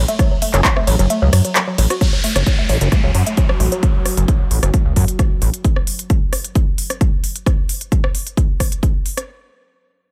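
A gritty, saturated sawtooth synth bass sits up front and pumps through this intense, driving peak-time techno cut in F# minor at 132 BPM, joined by an overdriven heavy kick that drops out from 1.1 to 2.0 seconds, a techno kit of handclaps, smooth hats, ride cymbal and rim click, a woody, warbling wave-folded pluck riff with chorus and delay, a downlifter, and a deep, moody pad drone that enters at 2.7 seconds in the background.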